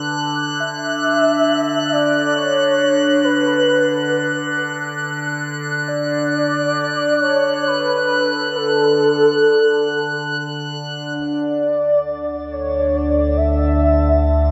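A velvety, mellow synth lead with vibrato and analog delay floats in at 0.6 seconds over an overtone-sweeping, wave-folded drone with a phaser and a drifting glassy harmonics texture in this weightless, serene ambient excerpt in free time and D major, all soaked in a lush hall reverb until a round, dark analog bass with tube saturation arrives at 11.2 seconds.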